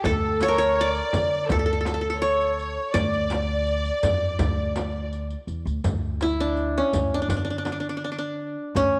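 In a straight 4/4, this soulful, longing fragment of an Arabic maqam ensemble puts a bright, fingerpicked qanun melody up front, joined by a lush, bowed violin section with smooth vibrato on a second line until 5.1 s, over a woody, thumpy pizzicato upright bass, a soft-handed frame drum, a vintage riq with jingling hard hands, and a very quiet, crisp, saturated metal-shell darbuka, all set in a wet echo-chamber reverb.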